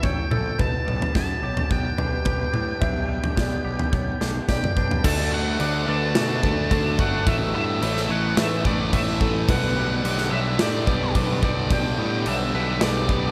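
This euphoric, soaring post-rock passage opens with a full band at once: a dark, fuzzy octave-fuzz lead guitar carries the melody, treated with slapback and tape echo, over a big rock drum kit with a punchy kick, bright cymbals and toms sitting up front. Beneath it, a round, overdriven picked bass anchors the low end, while a twangy, compressed clean guitar and a felt-muted upright piano, intimate and mellow with audible action noise, play arpeggios in the background, both touched by the same echoes. An icy, crystalline pad hovers very quietly underneath with slow-attack sustained chords and a soft chorus. A drum fill from 3.9 to 5.0 seconds leads into the second section, where a bright, overdriven distorted guitar enters with a riff up front and thickens the texture. The whole band sits in a moderate, lush hall reverb that gives it a big arena sound, and the passage is cut from a longer piece.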